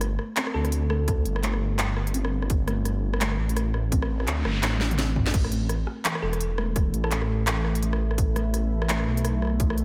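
Half-time drum and bass at 169 BPM with a dark, heavy mood, this dreamy, reverb-soaked excerpt pairs a deep, rumbling detuned saw bass and an up-front, hard-clipped electronic kick (entering at 1.1 seconds) with a layered kit of cracking snare, crisp hats, handclaps, rim clicks, toms and crash, all over chords moving from Gsus2 to Asus2. In the background, a woody, hollow kalimba plays arpeggios through analog delay, while a round, tine-like FM pluck with chorus adds brief melodic touches. A noise sweep and drum fill lead into the chord change at 5.3 seconds, and a moody ambient pad with 12-bit sampler grit and sidechain pumping rises in at 6.5 seconds.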